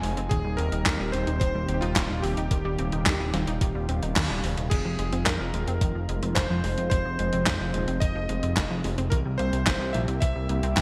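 A gated 80s digital drum machine sits up front with tape-warm crash, handclaps, hi-hat and a gated-reverb snare, joined at 0.3 s by a thumpy electronic kick, driving this cinematic synthwave excerpt. A bright, cutting electric grand piano carries the melody with vintage 12-bit sampler grit and digital delay, over a fat, detuned sawtooth bass, a lush, warbling unison pad with chorus and sidechain pumping, and punchy pluck arpeggios with delay in the background. The band hits an accent at 4.2 s, just before the harmony moves from Cm/Eb to Fm7 at 4.7 s and later on to C7, all in a bright 1980s-style digital sound with light reverb.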